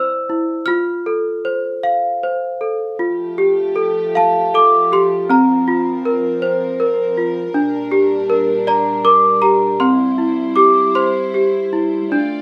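A rubato 6/8 sway carries this sleepy, innocent children's lullaby fragment, where a worn, bell-like celesta with hard felt hammers and a slightly out-of-tune, boxy sweetness sings the melody up front from the start, joined at 3.0 s by a soft, floating string section bowing pure sul tasto chords far beneath it, all heard as a band playing live in one room under a wet, large studio reverb.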